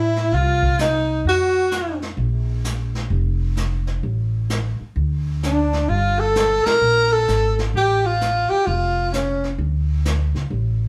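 Small-group swing and bop jazz at 130 BPM with a cool, smoky mood, cut from a longer piece, where a warm, close-miked tenor saxophone carries the melody with vibrato and scooped notes while a clear alto saxophone, set back in the background with a subtone and light vibrato, plays a second line; both horns sound together at the start, drop out at 2.0 seconds and return around 5.5 seconds. Underneath, a woody pizzicato upright bass sits up front throughout, and a brushed drum kit with dark cymbals and a boomy kick enters at 0.2 seconds, with the whole band hitting an accent at 6.6 seconds. The group plays live in one room with moderate studio reverb, moving from C minor through open chordless gaps to Gmadd9 and Fadd9.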